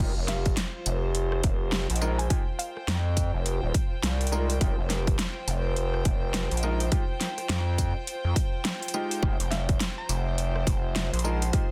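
Glitch hop in F minor at 104 BPM with a 16th-note swing, this swaggering, gritty drop is cut from a longer piece and rests on an Fm9 chord, driven by a saturated, aggressive synth bass and a punchy, up-front kick, with a dubstep kit adding a huge snare, metallic hats, rim clicks and tambourine. Clear baby grand piano stabs with audible action noise pump against the beat through dub echo, while a distant, earthy chamber string section bowed with light vibrato pumps in the same way above them. A dark, woody wave-folded pluck carries a brief melody in the background from 0.3 to 3.4 seconds and again at 9.5 seconds, coloured by chorus, 12-bit sampler grit and dub echo, all within a dry, dense, heavily limited modern master.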